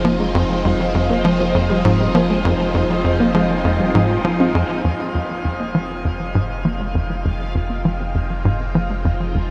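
A bright, swirling string machine sits up front in this cosmic, expansive slice of sequencer-driven space music, holding sustained Fm7 chords with a vintage, warbling ensemble chorus and phaser. Beneath it, a tight, nasal sequencer bass drives a punchy riff through tape echo, anchored by a deep, round sine sub bass on F. In the background, a lo-fi, detuned pluck traces arpeggios, its chorus and tape echo adding a dusty waver. From 4.8 seconds the string machine fades in further while a filter sweep moves across the synth bass, and at 6.7 seconds a resonant, bubbling texture of random filter steps slips in softly. The whole passage floats at a straight 100 BPM in F minor, bathed in a lush shimmer reverb with a long, glowing tail, cut from a longer piece.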